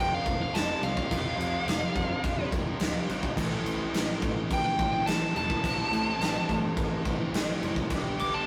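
A nasal, overdriven lead guitar with a parked wah sits up front, soloing high over an aggressive, driving hard rock excerpt at 106 BPM in 4/4 that moves from F to A minor to G. Beneath it, a double-tracked crunchy guitar, a quiet hollow-bodied semi-hollow guitar and a faint, bright, scooped high-gain guitar play the riff, while a dark, round, overdriven picked bass holds the low end in the background. A huge, punchy arena drum kit with crash, kick and snare comes in at 0.3 seconds, all caught in a rough rehearsal-room sound with moderate reverb and saturated warmth.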